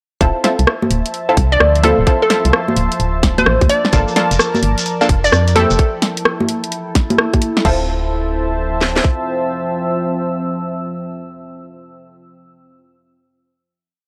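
UK garage in a two-step style at 129 BPM, this short, moody late-night piece sits in D minor with a 65% swing on the sixteenths. It moves through Dm9, Gm9 and a rootless Fmaj9 before settling on a final Dm9 chord at 7.7 seconds. Two layered electronic drum kits carry a tight two-step kick, cracking snares and skipping swung hats, rims, high congas and crash, while a hollow, organ-like FM bass plays a dark syncopated riff up front. Punchy, detuned chord stabs with chorus and tape echo ride over a smooth sustained pad and a deep, evolving ambient pad, both pumping with sidechain. A bouncy square-wave pluck adds short phrases, and a grainy, band-limited shekere plays sixteenths from 3.9 seconds, all in a gritty, cassette-tinged recording with light digital ambience.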